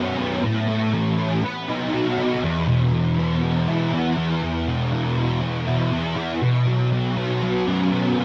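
A thick fuzz guitar carries this short rock excerpt alone, its electric, distorted tone picked and double-tracked so it sits up front in the mix. Distortion, ensemble chorus and analog delay thicken the part as it ranges from E2 to F#4 at a steady 120 BPM in a straight 4/4. The mood is wistful and hazy, with chords moving from A to B, then settling on E5 at 2.4 seconds and shifting to Bsus2 at 6.4 seconds. A huge ambient reverb with a 4.8-second decay surrounds the guitar, giving the dark production a cavernous sense of space. The clip runs just over eight seconds, cut from a longer piece.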